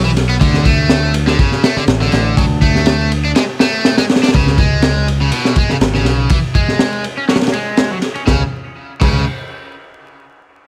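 A bright, cranked stack guitar riff, overdriven and shaded by a low-pass filter and dub echo, opens this swaggering, funky breakbeat cut at 122 BPM alongside a round, overdriven picked electric bass, with a gritty, punchy breakbeat kit with dark cymbals and a high-tuned snare arriving at 0.2 s, the swung sixteenths carrying a D5 drop that gives way to C#5 at 4.3 s before the harmony falls away at 8.3 s, wrapped in vinyl crackle and small-room ambience.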